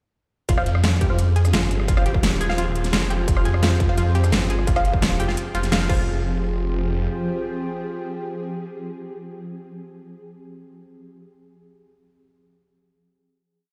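Heard on a big sound system in a bare room with large studio reverb, this dark, tense piece of technical drum and bass in F minor at 172 BPM opens its drop at 0.5 seconds with a distorted electronic kick, a huge-snared dubstep kit with metallic hats, cabasa, rim and crash, a very quiet, gritty looped breakbeat, and a snarling, growling distorted saw bass in chopped phrases. Meanwhile, a round analog pluck drifts a 6-step arpeggio against the bar, muted, nasal dub chord stabs echo sparsely, a swarming granular drone sustains chords, and a warbling, nostalgic tape-like pad plays slowly shifting chords. A final note rings out from 6.1 seconds.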